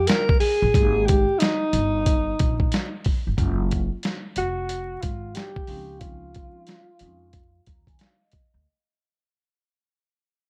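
A warm, cool mood settles over this short jazz-hop excerpt, moving at 91 BPM in 4/4 with a 16th-note swing. A breathy alto saxophone carries the melody between Eb4 and Bb4, its mellow, scooped notes softened by a low-pass filter and given a distant, roomy quality. Beneath it, a pizzicato upright bass sounds woody and growly between F1 and F2, while a dusty, sampler-style drum kit of kick, snare and hi-hat sits up front with overdriven, 12-bit grit and a thumpy kick. From 0.7 s a soft-mallet vibraphone adds quiet, ringing chords with slow motor vibrato through Abmaj7sus2, Gbmaj9 and Dbmaj9, then plays a fill from 7.3 s. The dark production carries vinyl crackle and light studio reverb, with a filter sweep and fade-out running across the whole passage.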